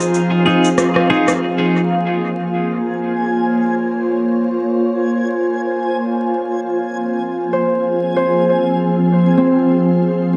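A dark, crackling vinyl haze soaked in a wet echo chamber frames this hazy, deep ambient dub excerpt in Bb minor at 94 BPM, with a swung 16th-note feel in 4/4. A mellow, organ-like pad with ensemble chorus holds sustained chords up front from Fm7 to Bbm9 and then Fm, with a filter sweep from 1.4 seconds. Beneath it, a muffled electronic shaker and rim click with dub echo add a drum fill, and a reversed, granular, dreamy texture swells high above. A fingerpicked, ringing Celtic harp plays arpeggios through tape echo at the start and again from 7.5 seconds, while a bright, twangy clean electric guitar offers brief stabs with dub echo early on.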